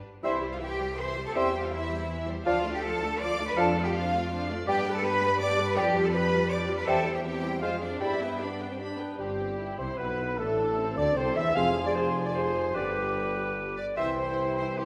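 In a straight triple metre, this cheerful, spirited excerpt from a fast, dramatic romantic movement for symphony orchestra sets a lush violin section on the melody above a second violin section, a clear clarinet, a hollow flute group and a mellow cor anglais on second lines, with a dark bassoon and a rich viola section accompanying, a distant French horn section holding chords, and focused cellos and smooth double basses carrying the bass, until at 9.2 s punchy trombones add sustained chords, bright trumpets add stabs and a tuba joins the bass, the whole orchestra set in a wet scoring-stage reverb.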